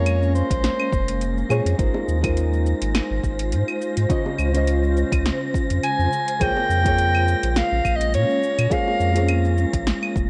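Through the warbling pitch drift of a worn cassette tape and light reverb, this smooth sunset chillout excerpt in Bb minor at 104 BPM sets a deep, round sine sub bass up front beneath thumb-plucked nylon-string guitar with finger squeak and tape echo, a detuned, ethereal pad with ensemble chorus, a breathy wind-like noise layer in the background, an overdriven electronic kick entering at 0.5 seconds, a layered deep house kit of punchy snare, metallic hi-hat, claves and shaker, and soft, low-tuned bongos from 1.9 seconds, while a mellow jazz-style soprano saxophone with digital delay opens briefly and returns at 5.8 seconds.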